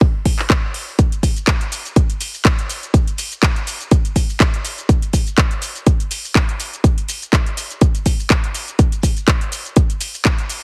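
A punchy electronic kick drum opens this funky, feel-good house fragment, with a barely audible acoustic tube shaker and group handclap tucked beneath it, all riding a lightly swung sixteenth-note groove in 4/4. At 0.3 s a layered, up-front house drum kit joins with handclaps, metallic hi-hats and shaker, its hats and percussion pumping against the sidechain, while both it and the kick carry a tape-warm, small-room character. The dry mix has a heavily compressed, radio-ready sound.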